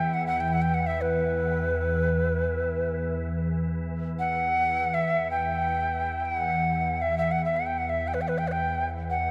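A breathy, reedy cedar flute in the Native American style leads this haunting, meditative world piece, its tongued phrases carrying gentle vibrato and delay up front. Beneath it, a calm, organ-like pad holds a low drone with a detuned, chorused shimmer, while a very quiet quartz singing bowl rings purely during only the opening 0.7 s. A huge ambient reverb bathes this free-flowing passage, which is lifted from a longer piece.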